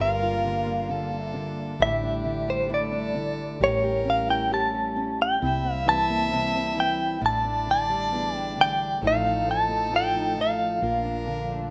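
A rough, home-demo sound with moderate studio reverb frames this heartbroken, intimate acoustic folk-pop ballad at 67 BPM, where an up-front, compressed clean electric guitar with tremolo carries the melody over a reedy, gut-string violin second line, a dark parlour-style fingerpicked steel-string acoustic guitar with audible finger squeak, a sul tasto chamber string section holding chords in the background, and a round, woody fretless electric bass with ensemble chorus, moving through chords from Gm7 to Bbmaj7 across this 11.7-second excerpt from a longer piece.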